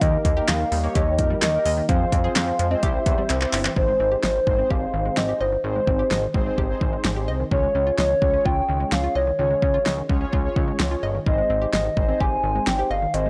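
Melancholic and nocturnal, this synth-pop excerpt at 128 BPM sets a hollow, woody clarinet-like lead with vibrato over fat, brassy detuned synth brass, round analog plucks arpeggiating through delay in the background, and a nasal, glossy chorused bass, all driven by an up-front deep house kit of deep kick, fat snare, handclaps and metallic hats that plays a fill at 3.3 seconds before the chords settle from Eb, Fm and C into Abmaj7 and Dbadd9, in a dry, gritty recording with transformer saturation.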